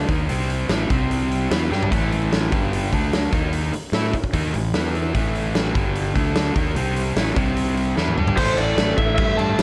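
A dark, double-tracked overdriven electric guitar riff drives this aggressive, menacing hard rock excerpt in A minor at 148 BPM, backed by a growly fuzz fingered electric bass and a huge, natural-sounding arena drum kit with a punchy kick and fills at 1.7 s and 8.0 s, before a lo-fi lead guitar through a small cranked amp enters with a melody at 8.4 s, the mix sitting in light reverb and small room ambience.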